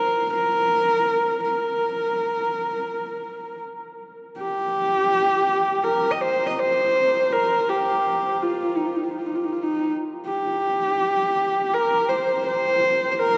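A straight 4/4 pulse carries this galloping yet vast Mongolian traditional excerpt, in which a lone horsehead fiddle, husky and intimate with light vibrato, soft attacks and gliding portamento, sits up front and close for all 13.4 seconds while a cathedral reverb with a 6.4-second tail opens a vast, echoing space around it.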